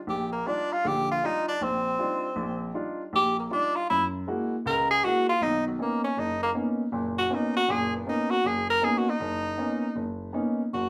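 A swung 4/4 pulse at 158 BPM, with a 65% lilt on the eighth notes, drives this short jazz excerpt taken from a longer piece, and its mood is searching and hypnotic. A bright tenor saxophone carries the melody as a solo from start to finish, sitting up front and colouring its lines with vibrato and scooped notes in a jazz style. An upright piano accompanies throughout, its woody, natural tone ringing with long sustain and also placed up front. The harmony moves from Ebmaj9 in Eb major to Gb9 at 3.9 seconds, then shifts to Bmaj9 as the key turns to B major at 5.4 seconds. A wet club reverb frames the pair, as if heard from further back in the room.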